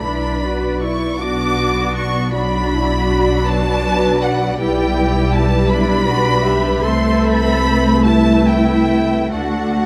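Tender and serene, this slow romantic movement for string orchestra moves in a rubato 12/8 at 46-54 BPM, drifting from B minor into G major at 4.6 s before settling on D at 9.3 s. A lush, expressive first violin section carries the vibrato-rich melody high above a woody, distant second violin line, while violas supply smooth, even accompaniment and the cellos sit in the background. Up front, a focused double bass section anchors the harmony, all bathed in a moderate recital-hall reverb that gives the dark production its glow.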